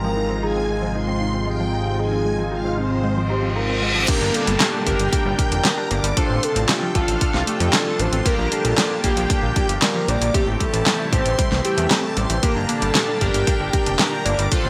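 A velvety, vibrato-touched synth lead carries the melody through this cinematic, driving synthwave excerpt at 115 BPM, joined by a shimmering string machine line, a lush detuned unison pad with sidechain pumping, and bright analog pluck arpeggios with chorus and delay. Glossy polysynth stabs with a cassette tape tint and a fat, sawtooth analog bass sitting up front drive the harmony from the opening Ab6 chord through a Gm, F6/A, Bb6 and Am7 progression. A reverse cymbal and downlifter enter at 3.3 seconds, leading into the electronic punchy kick and a pop drum kit with a fat snare, hi-hats, handclaps and crash at 4.1 seconds, all set in a bright 1980s-style digital production with plate reverb.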